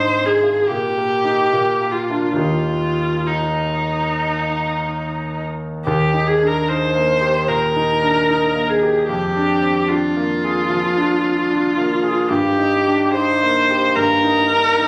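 Serene and tender, this romantic classical duo pairs a single bowed viola with a grand piano in 4/4 at an unhurried pace, shaped by a flexible rubato feel. The viola carries the melody from the start in its middle register, its tone rich and smooth with vibrato, sitting up front yet touched with a slightly distant quality. The concert grand accompanies throughout, clear and polished, with a deep bass underpinning the harmony. The opening phrase returns at 5.9 s, and the harmony settles onto a Bb7 chord at 9.1 s before moving to Eb/G at 12.3 s. A reverberant recital-hall ambience, heard through a phone recording in the room with added club reverb and compression, surrounds the pair in this fragment cut from a longer piece.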